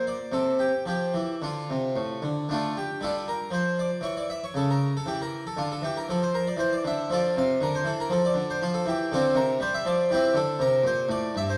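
Set in a flexible, rubato 3/4 at 118 BPM, this solemn, introspective baroque-style suite movement in D minor features a solo harpsichord, plucked and up front with a full, brilliant Flemish-style tone from three sets of strings, ranging from G2 to F5 and moving from F through Dm and C#dim7 back to Dm before landing on C, all bathed in a wet recital-hall reverb across this 11.6-second fragment of a longer piece.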